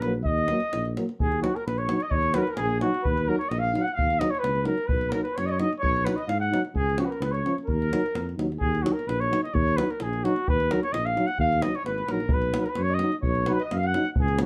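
Virtuosic and bittersweet, this Balkan brass band passage in Eb minor moves at 129 BPM in a straight 2/4, with a clear, vintage flugelhorn carrying the melody up front; a mellow, distant trumpet with light vibrato sits roomy in the background on a second line that drops out from 8.3 to 11.4 seconds; two euphoniums, one dark and one smooth-topped, share the accompaniment; a punchy tuba anchors the bass up front; and a tight acoustic davul handles percussion in a small-room sound, the whole set in moderate studio reverb.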